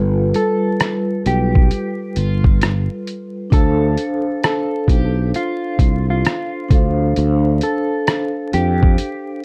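Reflective and hazy, this short lo-fi hip hop fragment, cut from a longer piece, sways with a swung 16th-note feel as a soft-mallet vibraphone rings out mellow, metallic chords with a slow motor vibrato, passing from G9 to Dm7 at 3.5 seconds. Beneath it a growly, bright fretless bass sustains up front, while a pitched-down, muffled sampler-style kit adds a thumpy kick, hi-hat and rim clicks, and a clean, dark electric guitar carries a quiet fingered melody in a narrow range. The vibraphone carries cassette-tape colour, and the whole mix sits in a dark, warm production with vinyl crackle and a moderate studio reverb.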